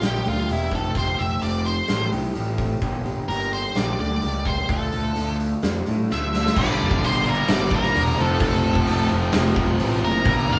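This brooding, cathartic alternative rock excerpt in G minor, at 129 BPM in a straight 4/4, opens with four parts playing together. A dark octave-fuzz lead guitar carries the melody up front, over a growly, overdriven fuzz bass that also sits prominently in the mix. A bright, twangy electric guitar through a small old amp picks slightly broken-up arpeggios, and a huge arena drum kit with a punchy kick, medium-tuned snare, hi-hat and crash sounds natural and roomy. The chords move from Gm through Fadd9 and back to Gm before Dm, and a drum fill around 6.1 s leads into the heavier half. The arpeggio guitar stops at 6.5 s, and at 6.6 s three riffing guitars enter over Gm and F: a compressed fuzz guitar in the background, a very quiet, thick, dark fuzz guitar and a tight, double-tracked distorted guitar, also in the background. The whole band sounds as if playing live together in a moderate stone room, lending the quiet-loud shift a raw, physical weight.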